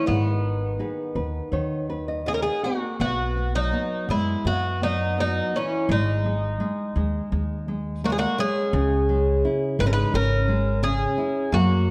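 An up-front Irish bouzouki carries the melody with a metallic, double-strung ring in this passionate, longing fado-style ballad in B major, cut from a longer piece and moving at a rubato 84 BPM in 4/4. A shimmering, octave-doubled twelve-string guitar picks a second line with audible finger squeak, while a full-bodied, fingerpicked nylon-string guitar accompanies in a deep classical manner and adds a fill from 0.8 to 3.0 seconds. Beneath them, a woody pizzicato upright bass sits forward in a dark production with light reverb, as the harmony moves from G#m through B5 and G#5 to C#m.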